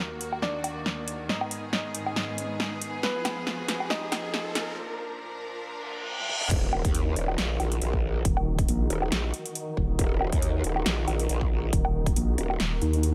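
Heavy wobble dubstep with a menacing half-time swing, where a worn baby grand melody opens over lush bowed strings that carry a build-up of drum fills, a riser and a reverse cymbal into a drop at 6.5 seconds, when a punchy electronic kick and a growling, saturated bass hit up front, joined at 8.2 seconds by a nasal, resonant vowel-sweep wobble bass alongside metallic hats.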